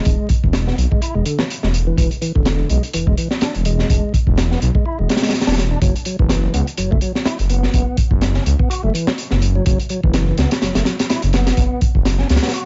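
A fat, lightly overdriven tonewheel organ riff opens this swaggering, gritty breakbeat excerpt in F# minor at 125 BPM, its key click and fast rotary speaker colored by a low-pass filter sweep and digital delay across the whole clip. A thick, menacing detuned saw bass and a crunchy acoustic breakbeat kit, with a punchy kick and high-tuned snare, sit up front beneath it, swinging on the 16ths over an E7 chord that moves to F#7(no3) at 5.8 seconds. The sound is dry and dusty, with vinyl crackle and a rolled-off top.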